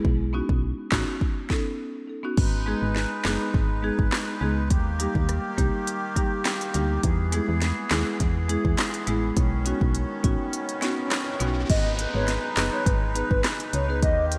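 An electronic afro-pop drum kit sits up front, with a deep kick, sharp snare, smooth hi-hats, handclaps, rim clicks and crash cymbal, all wrapped in gated reverb. This is a bouncy, sultry dancehall groove at 103 BPM in a straight 4/4, cut from a longer piece. A punchy, round FM bass with a dark, decaying tone and a fast attack anchors the low end, while a marimba with medium mallets adds woody, boxy accompaniment, and the chords move through B add9, G# minor, D# and E. A reedy, airy accordion enters at 2.4 seconds with sustained chords, carrying a light tremolo tuning and sidechain pumping. Background risers and downlifters arrive at 10.5 seconds as the kick briefly drops out, and at 11.7 seconds a hollow, soft clarinet-like synth lead takes up the melody, colored by chorus, phaser and vibrato. The bright, 1980s-style digital production sits in a lush hall reverb.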